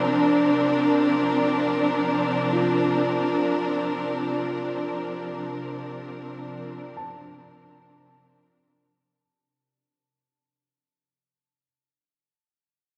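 This weightless, luminous ambient excerpt in free time opens on a lush, bowed string section, held up front in sustained chords from F3 to Bb4 over a C9sus4 harmony. A soft, felt-muted upright piano sits in the background with delayed arpeggios that carry on alone until 11.6 s, while a calm organ-like drone on C3 with ensemble chorus fades in and out alongside a barely audible, breathy wind-like noise texture. The whole is bathed in a huge, wet reverb with a rolled-off top.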